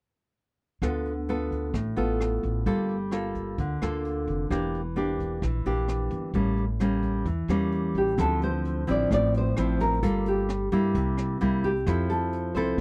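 A straight 4/4 bossa nova groove carries this melancholic, intimate fragment of a longer piece: a dark, thumb-plucked nylon-string guitar accompanies over woody pizzicato upright bass and a jazz brush kit with boomy kick, hi-hat and rim click, and at 8.0 s a full-bodied, fingerpicked nylon-string guitar melody joins them up front as the harmony moves from Dm6 and A7b9 into Dm9, C7 and Fmaj7, in a dry, close 1970s-style studio recording with light reverb.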